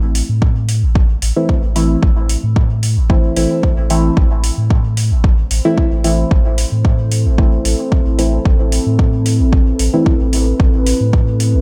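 Hypnotic and deep, this dub techno excerpt moves at 112 BPM in a straight 4/4, sitting on a single A minor chord throughout. A clean, smooth sine sub bass holds the low end from the very start, pumping against the sidechain. Metallic, overdriven hi-hats that carry the sound of a large room enter at 0.2 seconds, and an overdriven electronic kick follows at 0.4 seconds, sitting up front as the loudest element. At 1.4 seconds a mellow, full-bodied chord stab enters with a nasal, filtered pluck and fast attack, coloured by chorus, phaser, gritty 12-bit sampler texture and a dub echo that trails each hit. A moody ambient pad of detuned sawtooth unison and a sub octave fades in slowly at 5.6 seconds, sustaining with a long release, built-in reverb and the same pumping motion. Light digital ambience surrounds the mix, giving the dark, repetitive groove a subtle sense of space.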